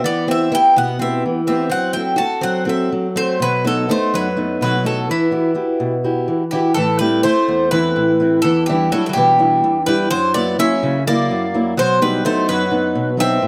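In a straight 7/8 at 251 BPM counted in eighths, this dramatic, tense Greek folk excerpt in E minor pairs a bright, up-front bouzouki melody with a mellow second bouzouki line, both picked on metallic double strings with some octave-doubling, over a warm, fingerpicked steel-string acoustic guitar, also up front, all captured in a dry, close 1970s-style small-room studio sound.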